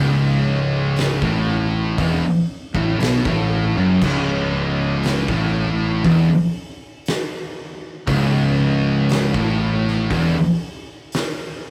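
A bright, scooped high-gain guitar sits up front, double-tracked and picked, grinding out a low riff on C# minor in this ominous, sludgy stoner and doom metal excerpt at a crawling 59 BPM in 4/4. Behind it, two thick fuzz guitars, dark and picked, thicken the riff from the background, one of them very quiet. A fuzz-laden fingered electric bass adds a round, overdriven bottom beneath the guitars from the start. The oversized, low-tuned acoustic drum kit enters at 1.0 seconds with a punchy kick, a fat snare, dark cymbals and hi-hat, set in a bright stone room that pumps around the hits. The whole take has the rough feel of a rehearsal room, with saturated tone and moderate reverb, and it stays on a single C# minor chord until it cuts off at 11.7 seconds.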